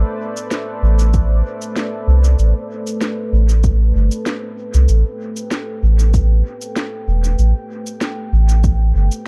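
A round, up-front sub bass anchors this deep, meditative ambient dub excerpt at 96 BPM in A minor, holding beneath a single Am7 chord while a moody, detuned sawtooth pad with chorus and built-in reverb sustains mellow chords from the start. A woody electronic snare with cabasa, carrying small room reverb and dub echo, enters at 0.4 seconds with a lightly swung pulse, and an overdriven, layered electronic kick follows at 1.1 seconds. The production is dark and digital, with a meditative stillness throughout.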